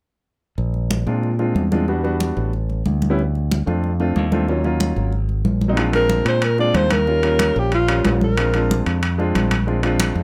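A brisk, straight 4/4 Afro-Cuban jazz groove starts at 0.6 s with fingered electric bass and congas together, lively and made for dancing. The bass sits up front, bright and direct, while the damped, medium-tuned congas, struck with hard hands, give a thin-skinned acoustic snap in a small-room sound. A baby grand piano joins at 1.1 s with warm, short-sustained chords that move through a series of sevenths. At 5.8 s the harmony turns to ninth chords and timbales enter with a ringing metal-shell tone from a live room. Soon after, a clear alto saxophone takes a short jazz solo up front, breathy and full of subtone, vibrato and scooped notes. Light reverb and close, detailed miking keep each part distinct in this fragment cut from a longer piece.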